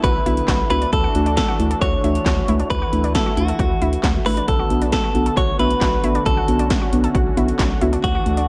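Bright and upbeat, this short synth-pop excerpt moves in a straight 4/4 over Bm7 and Dadd9 chords. Up front, a clean, direct-recorded electric guitar carries the melody with a twangy, picked tone, compressed and touched with spring reverb. Beneath it, a brassy analog pad holds sustained chords with a detuned, bold sawtooth character, soft attack, vibrato and chorus. A round analog bass gives a deep, nasal foundation, while an analog pluck sits in the background with wave-folded arpeggios, chorus and analog delay. Muted, felt-like synth keys enter at 0.3 seconds with soft, intimate decaying accompaniment, and 80s electronic drums drive the track with a punchy kick, gated snare, metallic hats and handclaps carrying a short room. The whole has a dry, gritty hardware sound set in a digital ambience.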